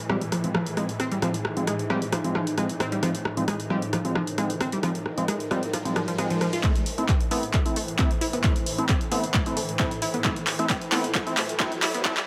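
Through a moderate digital room reverb, this excerpt of driving, industrial peak-time techno at 133 BPM in A harmonic minor sets a round, overdriven analog pluck riff with tape echo alongside edgy, nasal sync-sweep polysynth stabs in dub echo, both chorused and cassette-worn over a tense swarming drone and a blurred granular cloud pad, all pumping to the sidechain, while a tape-warm analog drum machine drives handclaps, hi-hat and rim click, a very quiet riser creeps in at 4.4 s, and a layered, punchy electronic kick lands up front at 6.6 s as the chords move from F minor to A minor and filter sweeps and a drum fill push the build-up.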